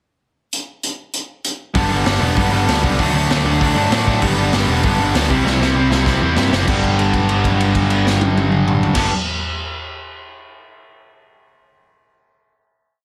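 Rowdy and upbeat, this short punk rock piece charges along at 195 BPM in G major, opening with a raw garage drum kit alone at 0.5 seconds before picked electric bass and two distorted electric guitars arrive from 1.7 seconds for a chorus over G, D and C. The saturated, gritty drums, with their punchy kick, sit up front in a pumping small room, while one guitar drives bright eighth-note barre chords, the other picks driving eighth-note power chords, and the growly, amped bass pushes steady eighth notes underneath. A drum fill leads to a final held G chord at 6.7 seconds, and the recording has a heavily compressed, radio-like sound with light reverb.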